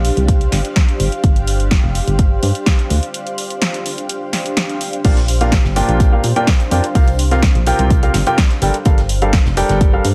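A dry, close-sounding mix carries this energetic, soulful piano house passage, cut from a longer piece and moving at 126 BPM in a straight 4/4. An overdriven electronic kick sits up front with a layered, punchy weight, joined by an analog drum machine whose crash, hi-hat and punchy snare were re-recorded in a large room. Underneath, a round, mellow FM bass with a fast attack pumps against the kick, while a granular cloud pad drifts higher up, blurred, detuned and slowly evolving in its own built-in reverb. After a break from 3.1 to 5.0 seconds, a clear, polished baby grand piano enters at 5.0 seconds with a present riff carried on delay and the same sidechain pumping. A very quiet acoustic studio kit adds hi-hat and a medium-tuned snare behind it from that point. The harmony moves through a rootless Bb6, G5 and Dm7 before returning to Bb6 and settling on Gm9.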